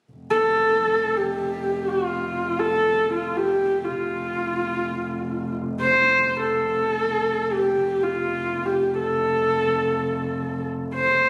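In free time, this Mongolian folk passage, cut from a longer piece, opens with a low, smooth and even bowed double bass drone on F at 0.1 s, shaded with vibrato. At 0.3 s a husky, intimate horsehead fiddle joins up front, carrying a soft-attacked melody in an F gong mode with vibrato and portamento. The sound is vast and proud, set in a moderate concert-hall reverb and captured on a phone in the room.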